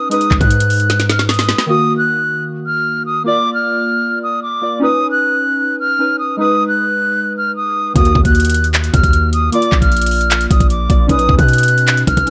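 Melancholic and dark, this half-time trap passage is cut from a longer hip hop piece and rides on a brooding minor progression. A bright, reedy concert flute carries the melody up front, airy with vibrato and a soft attack, softened by a low-pass filter. Beneath it, warbly lo-fi synth keys supply nostalgic, mellow accompaniment, their detuned, wave-folded tones blurred by chorus and dulled by filtering. The electronic trap kit, with its knocking kick, woody snare, metallic hats and handclaps, opens the passage and is quickly joined by a punchy, heavy 808-style bass; the bass drops away at 1.5 seconds, and the kit plays a fill before falling silent at 1.7 seconds. Both return at 8.0 seconds, the tape-toned drums sitting up front as the sine-based bass hits hard and decays, all set in a digital ambience.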